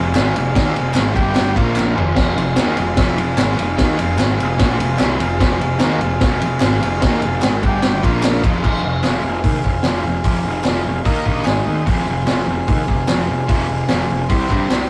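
A double-tracked fuzz guitar riff, dark and distorted, opens this menacing, raw garage rock excerpt in F minor at 148 BPM. It arrives together with a growly, overdriven picked bass and a buzzy vintage combo organ holding sustained chords with light vibrato. A vintage acoustic drum kit comes in at 0.2 seconds, up front, with a punchy kick, a high-tuned snare and dark cymbals, and a short fill at 1.8 seconds. Crisp group handclaps sit in the background. The transistor organ adds a fill around 7.4 seconds, and the music moves into a new section at 8.6 seconds before the organ returns for another brief fill. Everything sits in a rough rehearsal-room recording with a moderate booth ambience and saturated warmth, cut from a longer piece.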